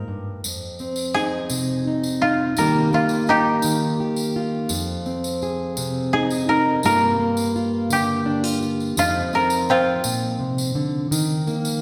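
This melancholic, intimate acoustic folk excerpt, cut from a longer piece, moves slowly at 56 beats per minute in a straight 6/8, set in F dorian with tuning at A4 = 438 Hz. A koto carries the melody from the start, its mellow, woody and dry tone played with fingerpicks and placed up front as it takes a solo from 0.4 seconds, staying between C4 and Bb4. Beneath it, a fingerpicked, plugged-in steel-string jumbo acoustic guitar supplies full-bodied accompaniment with the warm ring of fresh strings, ranging from F2 to Bb4 and sitting equally close. A jingly, warm tambourine with a live-room sound enters at 0.4 seconds and sits well back in the mix. The harmony moves through Fm7, Ebadd9, Fm7, Gm7, F5 and Ebsus2. The whole performance is bathed in the wet reverb of a church or concert hall, giving the small ensemble a spacious, reflective air.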